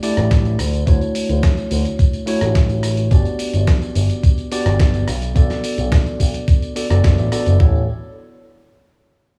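A feel-good, sunny slice of nu-disco cut from a longer piece, built on a drop that runs from the start to 7.6 seconds, where a mellow tine electric piano with analog delay carries the chords from A7sus4 through Dmaj9, Gmaj7 and Bm7. A punchy, up-front picked electric bass with an envelope filter and sidechain pumping holds down the low end, while a clean 12-bit digital drum machine supplies a thumpy kick and toms and a gritty, compressed soul sampler-style kit adds hi-hat, rim click, snare and tambourine through its own analog delay. The mix is echo-heavy with a small room reverb, and both drum parts carry a re-recorded small-room character, with the drum machine also sounding tape-warm.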